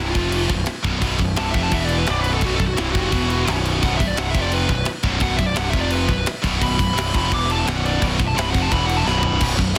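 A dark, distorted high-gain lead guitar with digital delay solos from the opening of this epic, aggressive heavy metal excerpt, over a riff cycling through F5, B5 and E5 chords from a double-tracked fuzz guitar and two bright, picked high-gain guitars in the background, a punchy, overdriven fuzz bass up front, and a tight acoustic drum kit entering at 0.1 seconds with a medium-tuned snare and crash cymbals, closing on a drum fill at 9.1 seconds, all within light reverb and a dense, heavily limited modern master.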